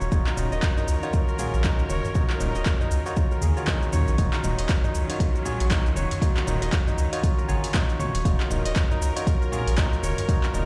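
An afro house groove in Eb minor at 118 BPM opens at once, with a lush, bowed string section holding an Ebm7 chord while a crisp, fingerpicked kora rings out arpeggios and a barky, clean tine electric piano adds bright stabs. Beneath them, a deep, round sine sub bass with a fast attack sustains low notes, and an afro-pop drum kit brings handclaps, metallic hats, shaker and toms with a tape-like warmth. From 0.1 seconds, a layered electronic kick sits up front, and acoustic congas sound distant in a large room in the background. The strings, kora, electric piano and sub bass all pump against the kick, and the kora and electric piano also carry a digital delay. The 4/4 feel swings its sixteenths at 59%, and the focused, vibrato-tinged strings sit back in the mix, giving this earthy, warm excerpt a lush, grounded mood. The sound is dry, yet it has the stony ring of a big sound system playing in a bare room.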